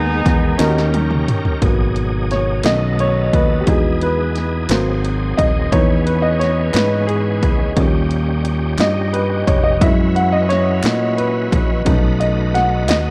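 Solemn and fervent, this slow gospel passage in 6/8 is cut from a longer piece and opens with a distant, roomy horn section stating a brief melody with light vibrato and slapback echo, heard only through the first second. A clear, woody upright piano, slightly detuned and up front, accompanies from the start and takes a solo from 1.6 seconds to the end, moving through rich seventh chords. Beneath it, a bright, shouting tonewheel organ holds sustained chords with a lightly overdriven edge, key click, chorus vibrato and a slow rotary speaker. A round, fingered electric bass sits up front, and a punchy, dry analog drum machine enters at 0.3 seconds with kick, snare, hi-hat and toms, playing a fill that leads into the solo. A very quiet, crisp group handclap joins at 0.6 seconds, and the whole is set in a dark production with light reverb.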